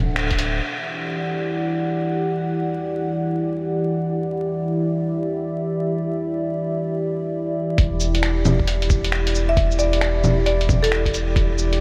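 Swung sixteenths at 134 BPM in 4/4 give this future garage fragment, cut from a longer piece in E minor, a loping, rainy and wistful gait. The dark analog pad and a round sine sub bass open together, and a brief band accent at 0.2 s brings in a lo-fi sampler-style kit of bongos, cabasa, finger snaps and hi-hat, followed by a muffled, overdriven kick. From 0.6 s the pad carries on alone, a detuned blend of square, sawtooth and triangle waves with a sub octave, chorus and sidechain pumping as a filter sweep moves across it through 7.8 s. At 7.8 s the thumpy, pitched-down kick, the deep tube-saturated bass and the compressed, small-room drum kit return together, with the kit sitting up front. A woody marimba played with hard mallets adds a short, smooth melody from 9.5 s, trailed by a diffuse ambient delay. The harmony moves from D7 to Em7, and the whole mix is soaked in a huge, dreamy reverb with a bed of vinyl crackle.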